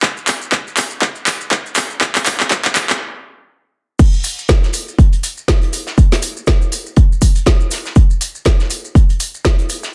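House groove at 121 BPM with a swung 16th feel and a moody, late-night air, where an up-front punchy electronic kick and a deep house kit of crash, handclaps, smooth hi-hats and a woody, softly clipped snare drive a drum-fill build-up with grainy background maracas, break off in a stop at 3.0 seconds, then drop at 4.0 seconds as a dark, acoustic soul kit enters in the background with its fat snare and sidechain-pumped hats, all under light reverb and a dense, heavily limited modern master.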